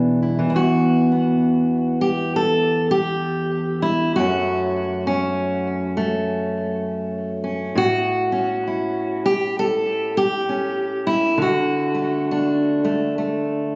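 Captured on a phone in the room and set in a moderate studio reverb, this short folk excerpt has a close, intimate sound with a gentle sense of space around it. A single fingerpicked steel-string acoustic guitar plays alone throughout and sits up front, its dark, auditorium-sized body tinged by a tape echo. The mood is haunting and melancholic, moving at an unhurried pace in four with a lightly swung lilt. The guitar opens on an E5 before settling into Em at 0.6 seconds, then moves through F#m, A and D, reaching D at 11.4 seconds. Its range stretches from deep bass notes up into the middle register, giving the lone instrument a full yet brooding voice.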